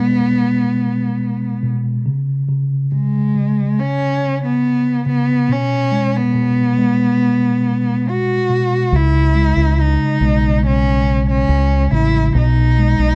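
A slow, straight 4/4 pop pulse at 70 BPM carries this melancholic, heartbroken fragment, tuned slightly below standard pitch and cut from a longer piece. A rich, expressive solo cello sings the melody up front with vibrato and portamento, over a mellow tine electric piano heard through its built-in speakers, moving through G#m/B, a chordless stretch and C#m. At 8.9 seconds a round, punchy fingered electric bass enters, dark and amped, all in a dry, close 1970s-style studio sound with a small room ambience.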